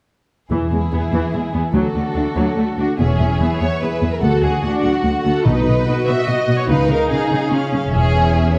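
A wet recital-hall reverb and a dark, warm production wrap this short cut from a longer heroic adventure film score in 3/4. A violin section carries the expressive, vibrato-laden melody, while a second violin section adds a soft-attacked, smooth-topped line beneath it and a rich viola section fills in the accompaniment. A concert harp rings out mellow, fingerpicked arpeggios in the background, and a woody, distant cello section holds down the bass. Close, dry timpani struck with medium mallets mark the opening at 0.5 seconds and return at 5.5 seconds. A double bass section joins at 3.0 seconds with light vibrato and an even tone, deepening the low end as the passage moves into its second section with a lush, adventurous sweep.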